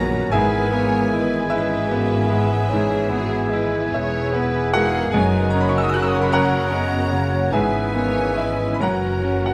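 Lush and lyrical, this classical passage, cut from a longer piece, moves rubato at 50 BPM in 12/8, with a bright, brilliant concert grand piano up front carrying the melody over deep bass while a vibrato-rich studio violin section joins the melody softly in the background. Second lines come from a clear oboe, a dark, roomy clarinet, a focused symphonic violin section and an airy wooden flute, as a smooth viola section and a close-miked bassoon fill the accompaniment, French horns and a tight trombone section sustain chords, and a dark trumpet adds stabs. A distant chamber cello section and a rich double bass section anchor the bass, all set in a moderate recital hall reverb as the harmony moves from E/G# to F# at 5.1 seconds and closes on F#7 at 8.8 seconds.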